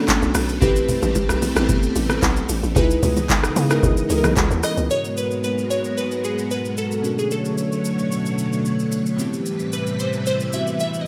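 Amapiano at 112 BPM with a hypnotic, late-night mood, this excerpt opens on a drop where a booming analog drum machine with a deep kick, metallic hats, handclaps, rim clicks and shaker sits up front, joined by ringing bongos and congas in the background and a hollow, bouncy log drum bass that both fall away by 4.9 s, while lush vintage string-machine chords pump under sidechain and chorused glassy digital keys move through minor-ninth harmony, before a glassy, crystalline wavetable pluck carries the melody with chorus and tape echo from 4.6 s, all set in a lush hall reverb with a rough home-demo mix.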